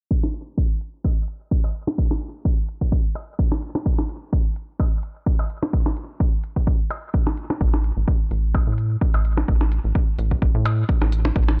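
A punchy, up-front analog kick drives this hypnotic, sparse minimal techno excerpt at 128 BPM in 4/4 with a light 16th-note swing, joined by produced percussion blips trailing tape echo and faint, smooth layered hi-hats, until a dark, rubbery square bass with a resonant filter pluck enters at 7.6 s between A1 and A2 with sidechain pumping, all set in a dry, gritty hardware sound with transformer saturation, a low-pass filter and a filter sweep running throughout.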